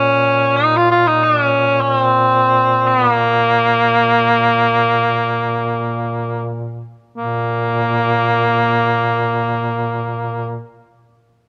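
A cor anglais carries a longing, solemn melody in free time over a low duduk drone on Bb, opening this fragment of a Caucasian folk lament in Bb minor. The cor anglais sits up front with light vibrato and classical poise, its mellow tone sounding roomy and distant, while the quieter duduk adds vibrato, scooped notes and a smooth top in folk style. The pace slows through the first 7.2 seconds before a second passage begins, and both instruments stop at 10.6 seconds, captured by close, detailed microphones with light reverb.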